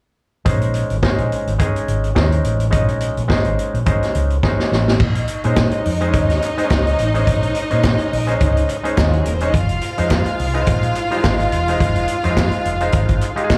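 Disco excerpt with a glamorous, driving swing, where an overdriven auto-wah clav and a round, punchy hollow-body bass play alongside a punchy, dark-cymballed vintage kit up front, then after a drum fill a lush, bowed string section with tape echo enters at 5.0 seconds and crisp group handclaps sit in the background from 5.6 seconds, all heard through a live venue's PA with club reverb as the harmony shifts from Bbm11 to Fm7.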